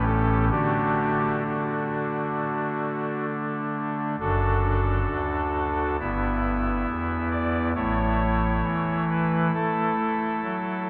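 A solo pipe organ opens on a soft, reedy oboe stop with romantic voicing and tremulant, sitting up front in this classical, chorale-style fragment in D major at 67 BPM in 4/4, tuned to A4 = 442 Hz. The rubato phrasing feels majestic yet serene, moving from A7 to D, then through D/F# at 4.2 seconds and Em/G before settling on A. A cavernous cathedral reverb with a 5.6-second tail surrounds the organ across its span from F#1 to E5.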